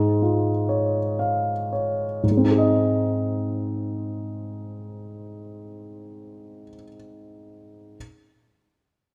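A warm concert grand piano, placed up front with a deep bass, opens this serene classical fragment in Ab major at a slow, rubato 42 BPM in 6/8, easing back over a Db/Ab chord before settling onto Ab at 2.2 seconds, all carried by a moderate scoring-stage reverb.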